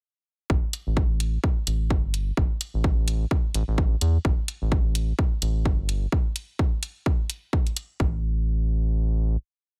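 A dry, close recording with little reverb places each sound up front in this short, complete minimal techno piece, its mood cool and clinical and its sixteenths lightly swung, tuned slightly below concert pitch. From 0.5 seconds a punchy electronic kick drives a steady four-on-the-floor pulse, layered and tape-warmed, with the grain of being re-recorded in a small room. A programmed closed hi-hat, sitting lower in the mix, traces a backbeat pattern with the same small-room, tape-warm character. The centrepiece is a round, deep analog bass riff between G1 and E2: a syncopated line blending square and sine tones, wave-folded and tube-saturated, with a fast attack, a mellow sustain and a shape that evolves while sidechain pumping makes it breathe against the kick. The kick stops at 8.1 seconds, leaving the bass to hold a final note that rings out until 9.4 seconds.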